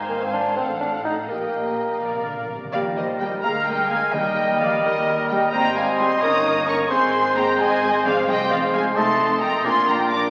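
A lively, cheerful classical-period orchestral movement in a straight 6/8, cut from a longer piece, in which lush, expressive violins carry the melody over a smooth second violin line, background violas, cellos with gentle portamento, close double basses and a distant, roomy bassoon. A soft-malleted timpani fill at 2.0 seconds leads into a fuller passage from 2.7 seconds, where a clear oboe, airy, hollow flutes and mellow background French horns holding chords join, with a bright, vintage-toned solo clarinet entering at 3.4 seconds. The whole sounds like a very old 78 rpm record with vinyl crackle, bathed in a wet scoring-stage reverb.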